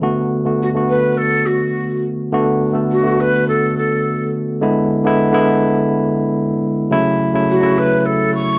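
A light studio reverb gives this short soul fragment a smooth, cinematic sheen, lasting just over eight seconds in a straight four-beat pulse at 105 BPM. A worn, slightly out-of-tune tine electric piano carries the accompaniment from the first moment, its clean tone heard through built-in speakers and placed up front. At 0.6 seconds a breathy jazz flute takes the melody, soft in attack, hollow and mellow, with a straight tone that sounds distant yet sits up front in the mix. The harmony moves from Bm7 to E7 at 4.6 seconds and settles on F#m7 at 6.9 seconds, giving the brief passage a smooth glow before it is cut off.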